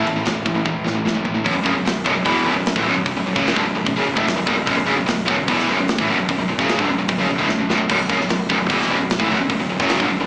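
Heavy metal at 149 BPM in B minor, aggressive and epic, heard as a snippet of a live gig through a club PA, with small-speaker character and light club reverb. A high-gain, double-tracked picked guitar riff sits up front over a growling, overdriven fingered bass, shifting from an A5 chord to B5 at 1.5 seconds. A mid-forward acoustic kit with bright cymbals, a medium-tuned snare and a tight kick plays throughout, adding drum fills at 0.7 and 7.5 seconds.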